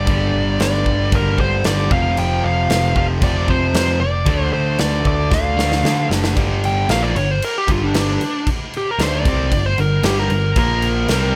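Aggressive and menacing, this hard rock excerpt drives along at 114 BPM in a straight 4/4, centred on G minor and cut from a longer piece. A dark, smooth, overdriven lead guitar sits up front carrying the melody, and from 6.4 seconds it takes a solo as the music moves into its second section. Beneath it, an overdriven semi-hollow guitar with a hollow-body warmth plays the riff alongside a tight, bright distorted guitar set in the background. A picked electric bass adds a growly, amped edge, while a big acoustic drum kit, heard in a large room and placed up front, brings a punchy kick, a medium-tuned snare and bright crash cymbals, with a fill from 5.3 seconds leading into the solo. The harmony moves through G5, F5 and Dm before landing on Gm and closing on Bb5, and the overall sound is dry, with little reverb.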